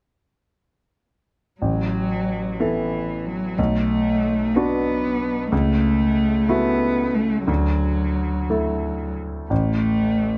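A clear grand piano carries the accompaniment in this melancholic, fragile neoclassical fragment. Its intimate, natural tone has short sustain and audible action noise, and the chords move through Asus2, Bm7, F#m7/C# and Dadd9. A single bowed cello sings the second line in a warm, expressive voice with vibrato and portamento. Both instruments play from 1.6 to 10.4 seconds at a slow, rubato 61 BPM in 6/8, set in light reverb with a dark production.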